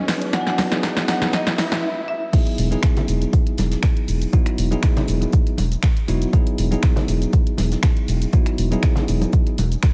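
Deep house with a sunny feel, opening on a build-up where a bright hard-mallet marimba with sampler grit and tape echo, a bell-like electric piano with dub echo and sidechain pumping, a background riser and a very quiet warbling pad lead into a drop at 2.3 seconds, while an up-front punchy kick, a round, deep analog bass, a tape-warm drum machine with snaps and shaker, faint brushed kit and soft, damped congas all enter within the first second and carry the groove through it.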